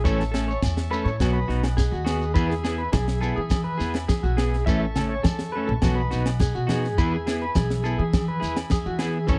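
A straight 4/4 groove at 104 BPM from a dry, tight funk drum kit with a high-tuned snare drives this sunny, carefree highlife guitar band excerpt in E major, where a woody pizzicato upright bass thumps up front beside a clean, bright picked electric guitar. A twangy, slightly broken-up second guitar through a small old amp plays arpeggios with tremolo and slapback echo, and a reedy tonewheel organ with key click holds sustained chords through overdrive and a slow rotary speaker in the background. Grainy shekere and ringing agogo bells fill out the percussion, with hard-handed congas joining at 2.4 s, all captured in a close, dry 1970s-style studio sound.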